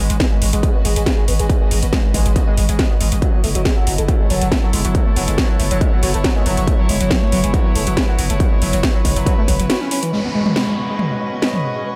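This dark, industrial peak-time techno cut opens with a gritty, screaming synth riff over a growling, buzzy 808-style bass, while a distant chamber string section fades in beneath them. The distorted electronic kick sits up front and drives a straight pulse alongside a techno kit of cracking snare, metallic hats and toms. Sidechain pumping makes the lead, bass, strings and kit all breathe around the kick, and the guitar-like lead also carries phaser, subtle chorus and tape echo. The bowed strings add a soft, floating ensemble texture under the grime. A band accent at 9.7 seconds leads into a brief break, and from 10.1 seconds an electronic downlifter sinks under the lingering lead and strings in light digital ambience.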